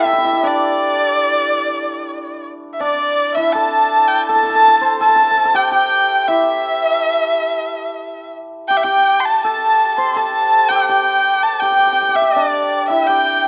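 Flowing in a free, rubato pulse around 82 BPM in 4/4, this festive, pastoral fragment of Chinese traditional chamber music in the D shang mode sets a boxy, up-front bowed erhu singing the melody with vibrato and portamento over a shimmering, ringing hammered dulcimer and a second, smooth-topped erhu line sitting in the background, all three playing throughout the 13.5 seconds inside a moderate recital hall reverb.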